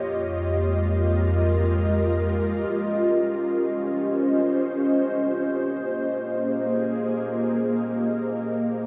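Ambient music in free time, this short excerpt cut from a longer piece feels weightless and warm, drifting through Fm11, Dbmaj9#11, Abmaj9 and Eb9. An ethereal, airy pad carries sustained chords across the whole 8.9 seconds, its detuned sawtooth and triangle layers blurred by ensemble chorus and its own reverb, with slow attacks and long releases that let each chord melt into the next. Sitting up front in the mix, the pad stays mellow while spanning Ab3 to Eb5. A round sine sub bass holds a deep F2 beneath it for the opening 2.7 seconds before falling away as the harmony moves to Dbmaj9#11. The whole mix is soaked in a huge, dreamy reverb with an 8.2-second decay, giving the sound a floating, cloudlike haze.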